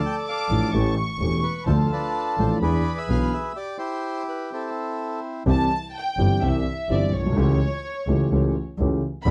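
A dry, close 1970s-style studio sound with light reverb frames this melancholic, sultry tango excerpt in A minor at 127 BPM with a rubato feel: a reedy, up-front bandoneon carries the melody until 5.4 seconds over a warm concert grand piano with deep bass and short sustain and a bowed, nasal double bass with portamento, while a dark, distant violin section with gut-string tone and slapback echo traces a second line, then takes the lead from 5.5 seconds after a stop at 3.6 seconds.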